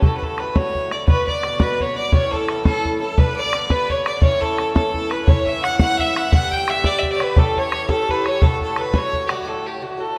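A rollicking Celtic jig in 6/8 at 114 BPM, this lively excerpt in D major is driven by an open, boomy bodhran sitting close and up front, while a picked Irish bouzouki with metallic double strings carries the accompaniment through chords moving from D and Bm to A, G and A7 before returning to D. An earthy, distant fiddle plays the melody up front, and at 1.1 seconds a bright, biting second fiddle with light vibrato joins with an intense line. The parts sit in a lush hall reverb with a rough home-demo mix.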